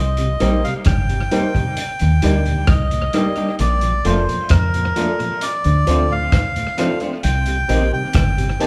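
Laid-back roots reggae in a straight 4/4, cut from a longer piece, where a reedy, nasal melodica carries the melody over a round, foam-muted dub bass, a muffled vintage drum kit with a punchy kick and tape echo on hi-hat, kick and rim click, a clean hollow-body guitar also touched with tape echo, boxy dark grand piano stabs, and a lightly overdriven tonewheel organ with key click, chorus vibrato and slow rotary speaker sitting in the background, the band playing live together in one large studio room over a chord cycle that moves from Cm7 through Ebmaj7, Bbmaj7 and Dm7 back to Cm7.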